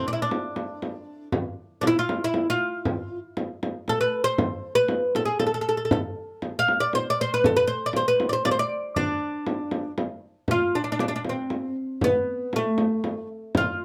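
A straight 3/4 pulse at 118 BPM drives this longing, soulful Arabic maqam ensemble passage, tuned to A4 = 442 Hz and cut from a longer piece. The up-front oud carries the melody from A3 to F5, its fretless, plectrum-plucked double strings sounding bright and woody, while the frame drum enters at 0.3 s with a warm, soft-handed touch. A moderate small-room ambience surrounds the pair, and the music moves into a new section at 10.5 s.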